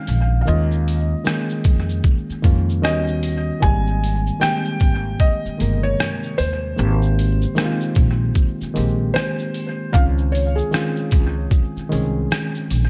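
Nostalgic and cosy, this lo-fi hip hop passage, cut from a longer piece, moves at an easy 76 BPM in Ab major with a gentle 16th-note swing. A felt-muted upright piano carries the melody throughout, its soft, mellow tone intimate and vintage, with audible action noise and an analog delay trailing its notes. Beneath it, a reed electric piano plays clean, reedy accompaniment through built-in speakers, coloured by cassette tape and sitting up front. An upright bass enters at 0.1 seconds, plucked with a woody, growly bite and a bright steel-string edge, alongside a gritty, compressed, pitched-down sampler-style trip hop kit of thumpy kick, rim click, hi-hat and shaker with a tape-warm character. The harmony drifts from Eb9sus4 through Eb7alt to Abmaj7, settling on Dbmaj9 at 9.9 seconds, all within light reverb and an echo-heavy, cassette-tinged mix.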